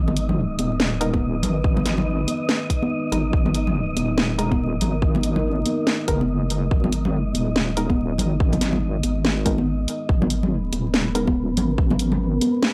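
A deep, wobbling bass built from square and sine tones and an airy, wind-like noise texture open this brooding, dark cut from a longer deep dubstep piece in G# minor, moving at 142 BPM with a half-time feel and swung 16ths. Bright, saturated congas carrying dub echo and a tape-warm garage kit with hi-hat and a cracking snare arrive almost at once. Meanwhile a moody, warbling pad of detuned sawtooth unison with a sine sub octave sits in the background, sustaining a G#madd9 chord through chorus and reverb. From 1.0 seconds, muted sawtooth chord stabs with a filter pluck decay into dub echo and subtle chorus, and a tight, up-front electronic kick enters at 1.1 seconds. The whole recording has a dry, gritty hardware character with light reverb and vinyl crackle.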